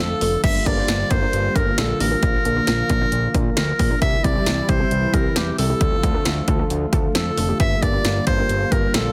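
A bright, close-miked clarinet opens this nocturnal, driving synth-pop excerpt, playing a classical-style solo melody up front with a tape echo trailing its phrases. Beneath it from the start, a brassy analog pad holds sustained chords in the background, its detuned sawtooth tone bold and evolving, with a soft attack, vibrato and chorus. A fat analog bass anchors the low end with a thick, nasal, saturated sawtooth-and-square sound that has a fast attack and sustains. From 0.2 seconds a warbly, dusty pluck joins quietly in the background, its lo-fi, mellow decaying notes carrying a noise layer and chorus. A punchy analog drum machine enters at the same moment and sits forward in the mix, its overdriven kick, snare, hi-hat and crash giving the groove its drive over a chord cycle of Gm7, Bb, C and Dm that returns to Gm7, all in a dense, heavily limited modern master with light reverb.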